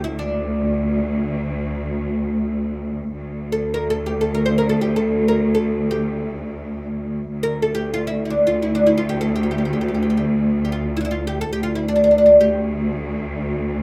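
Set in a lightly reverberant studio space, this hypnotic, soulful fragment of a longer Turkish makam ensemble piece unfolds in free time in makam Ussak on D, with a bright, woody, fretless oud, plectrum-plucked on double strings and bathed in plate reverb, carrying the melody between D4 and C5 until 13.2 seconds over a lush, focused, bowed cello section that holds a D2 drone with vibrato until 13.8 seconds.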